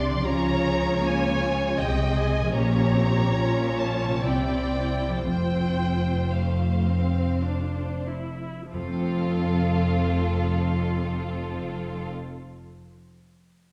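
A bright, ringing concert harp plays arpeggios in the background of this serene classical excerpt in three, set against dark, veiled con sordino strings: muted violins carry the melody and a second line, violas supply soft-edged accompaniment, and cellos and double basses anchor the bass. The rubato pace gradually slows through the opening passage, sitting in a reverberant scoring-stage space heard from further back in the room. At 8.7 seconds a new section begins, where barely audible hard-mallet timpani join, close and dry.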